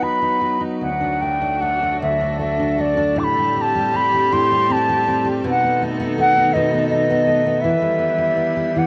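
A rubato 3/4 pulse drifting between 75-83 BPM carries this mournful, longing Celtic slow air fragment, where a mellow, airy wooden flute sings the melody up front over a full-bodied fingerpicked steel-string acoustic guitar, while a dark, woody bowed cello with vibrato murmurs a second line in the background and an icy, crystalline glass pad with chorus and built-in reverb holds sustained chords, the cello, guitar and pad tinted by cassette tape in a lightly reverberant home recording that moves from B through D, Am7 and B7 to Em.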